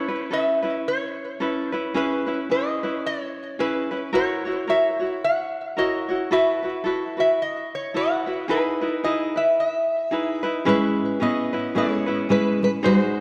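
A dark, mellow production sets everything in a moderate stage reverb, giving this short cut from a longer piece a soft, rounded glow. The style is Hawaiian, languid and relaxed, moving at an easy swung pace in four. A metal-body resonator slide guitar carries the melody up front, played with fingerpicks and a slide, its tone metallic and nasal and trailed by tape echo. Beneath it, a tenor ukulele fingerpicks a bright, light accompaniment through chords such as B9sus4, E6, F#7 and Emaj7. At 10.7 seconds the harmony shifts to C#m7 and a fingerpicked steel-string acoustic guitar joins with a second line, its low, auditorium-sized body adding depth beneath the other two.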